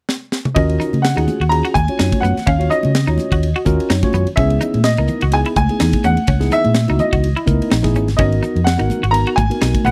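Intense and funky, this dry, close 1970s-style electric jazz fusion excerpt opens with a drum fill before a crisp kit with a punchy kick and high-tuned snare and a dark, round fingered bass drive the groove up front, while a clear baby grand piano carries the melody, a tine electric piano supplies accompaniment with a fill at 3.7 seconds, a twangy clean guitar adds stabs through lush chorus, and bright, thin-skinned congas sit in the background over chords moving from Ebm9 to Dbm9 to Abm9.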